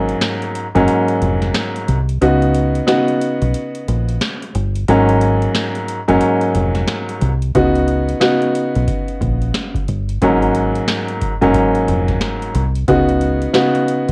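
A woody, vintage upright piano with a short sustain sits up front, voicing Ab9sus4 and Db9sus4 chords through cassette-tape grit in this nostalgic, soulful boom-bap hip-hop excerpt at 90 BPM, with a 61% swing on the 16ths. Beneath it, a dark, round, foam-muted fingered electric bass gives a punchy dub low end, and from 0.1 s an analog drum machine, also run through cassette tape and re-recorded in a large room, adds a deep kick, crisp snare and metallic hi-hats. The opening 7.5 seconds form a break, and the home-cassette sound stays dry throughout.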